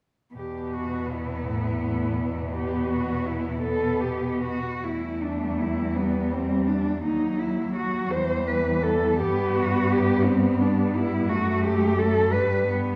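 Two dark, veiled cellos playing con sordino open this elegiac classical excerpt at 0.3 s with a second line up front and a bowed accompaniment, joined at 0.4 s by a third cello singing the melody from the background and a fourth holding the bass up front, all four with vibrato and a smooth top, moving in a melancholic, rubato 6/8 through a reverberant recital hall heard from further back in the room.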